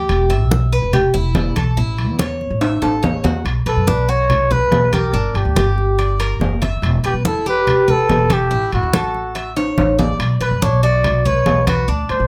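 Cuban son in the guajira style, danceable and warm, this excerpt opens with a picked Cuban tres playing metallic double-string arpeggios over a woody pizzicato upright bass, with bright, dry congas struck with hard hands and ringing, vintage-toned timbales. A drum fill at 2.6 s leads into a new section, and at 3.7 s a bucket-muted trumpet takes the solo melody up front, veiled and raspy with vibrato, scooped notes and a growling, jazz-style punch. The moderate studio ambience keeps the groove close and lively as the chords move through E minor, A, B minor and G minor.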